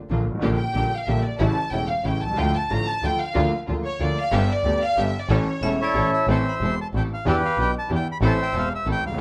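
A deep-bassed, vintage-toned concert grand piano opens this tense, melancholic tango fragment alongside a bowed double bass with an intense, boxy, airy tone and a rich string section placing smooth stabs in the background. The music moves in 3/4 at 185 BPM with a rubato feel, tuned to A4 = 435 Hz, and passes through chords such as Gm/Bb, A, Dm and G. From 0.6 s a studio violin section carries the featured second line up front, its sound even and silky with light vibrato. Hard-mallet vibraphone adds a brief, metallic, ringing figure through an analog delay at 5.6 s. A reedy, close-miked bandoneon takes the melody at 5.8 s, full and dry yet touched with plate reverb, as the harmony turns toward Am and Em7 in a moderate club-sized room.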